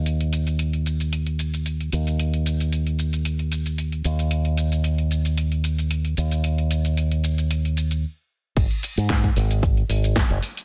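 A digital ambience surrounds this short nu-disco fragment, with a bright, up-front electric bass carrying the sound. Set at 113 BPM in 4/4 with a light swing on the sixteenths, the mood is sensual and cosmic. The fingered bass runs through an envelope filter and sits direct and amped from 0.0 seconds, ranging from F#1 to G#2. A produced, layered pop kit sits lower in the mix, pairing a fat snare with warm hi-hats, a shaker and crash cymbal. After a stop at 8.0 seconds, the drop arrives at 8.6 seconds as a punchy electronic kick joins the groove until 10.3 seconds.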